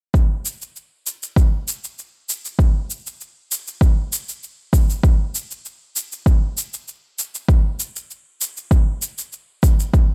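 A deep, overdriven electronic kick drum sits up front in this hypnotic, mystical slice of organic downtempo, moving at 98 BPM in a straight 4/4 and running from 0.1 to 10.1 seconds. Beneath it, a layered shaker carries its own overdrive, and both parts have a produced sound re-recorded in a large room. The overall mix stays dry, with little reverb, in this short cut from a longer piece.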